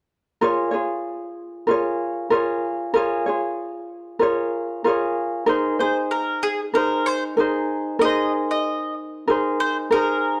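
Cassette-tape grain and a wet studio reverb frame this wistful, tender acoustic pop fragment in Bb minor at 95 BPM, lightly swung on the sixteenths and tuned a touch flat to A4 = 437 Hz. A light, thumb-plucked ukulele sits up front with plate reverb from 0.4 seconds, accompanying a Bbm7 that moves to Abadd9 at 5.5 seconds. At 5.8 seconds a mellow, round mandolin joins up front with picked arpeggios on its double strings, also bathed in plate reverb.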